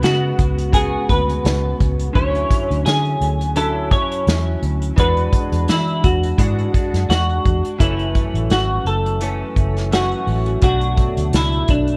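Indie and bedroom pop with a lonely, wistful feel and a lightly swung lilt, cut from a longer piece, where an up-front, hollow-bodied semi-hollow electric guitar carries the clean picked melody with analog chorus over a bright, compressed direct-recorded clean guitar whose chorus and warbly pitch drift shimmer in the accompaniment, a dark, round foam-muted electric bass, and a punchy, up-front acoustic drum kit of kick, snare and hi-hat played with bundle sticks, all set in a small, lightly reverberant room and colored by the worn warble of old cassette tape as the harmony moves from suspended and extended chords into a minor-key passage at 7.8 seconds.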